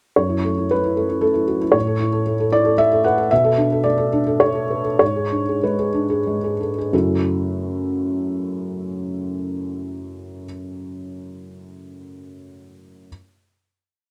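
This neoclassical minimalist piano piece is a brief, wistful and intimate miniature for a felt-muted upright piano playing alone. In triple metre with a free, rubato feel, a single-line melody floats over rippling figuration, moving through F#m7, A, Bm7 and G#dim. The pace slows between 2.5 and 6.9 seconds, easing into a return to F#m7 at 6.9 seconds, where a final chord is held and allowed to ring until the piano falls silent at 13.1 seconds. The felt gives the instrument a mellow, muffled tone, and its close, up-front placement lets the soft mechanical action noise come through. A light reverb adds a gentle sense of room around this natural-sounding performance.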